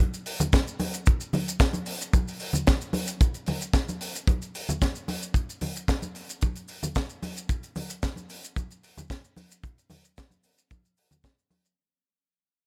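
A straight nu-disco groove with a cosmic, groovy mood opens on a drop at 0.0 seconds with a tight, small-room funk kit of hi-hat, shaker and high-tuned snare, joined at 0.3 seconds by bright, close maracas and hard-handed congas, while a natural, tight kick sits up front from 0.5 seconds, all quite dry in this short section of a longer piece that fades out from 3.2 seconds.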